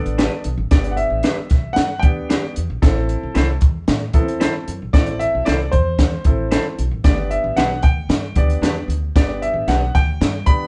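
Two clear pianos open together, the intimate grand carrying the high melody while the woody upright comps beneath, as upright bass and a compact cocktail kit with a high-tuned snare and punchy kick join at once in this warm, danceable uptempo 1960s-style soul cut at 114 BPM in G major, moving from G to Am and back, with slightly broken-up guitar stabs from a small old amp and light reverb giving the feel of a band playing live in one room.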